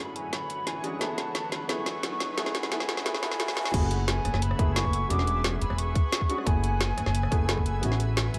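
A hollow, gritty concert flute melody opens this lush, rolling liquid drum and bass excerpt at 176 BPM in F# minor, over soft felt-muted upright piano accompaniment and a shimmering, detuned ambient pad with sidechain pumping, while a layered kit of woody snare and metallic hats plays a build-up fill alongside a very quiet riser until the drop at 3.7 seconds brings in thumpy pizzicato upright bass and a tight, up-front electronic kick, the mix soaked in dreamy plate reverb.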